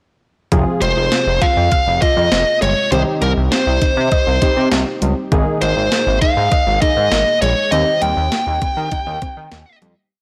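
Synth-pop with an upbeat, nostalgic mood, driven by a straight, overdriven 12-bit drum-machine beat with a thumpy kick, a medium-tuned snare and hi-hat, while a glossy, nasal chorused synth bass sits up front and mellow analog keys hold close-voiced chords through Fm, Cm, Absus2 and Eb6. A dark, soft pluck with chorus and digital delay runs rising and falling eighth-note arpeggios in the background, and a smooth overdriven electric lead guitar carries picked hook phrases on top. The mix sits in a moderate echo-chamber reverb with a blown-out, overdriven sound and fades out from 7.7 s to the end at 10.1 s.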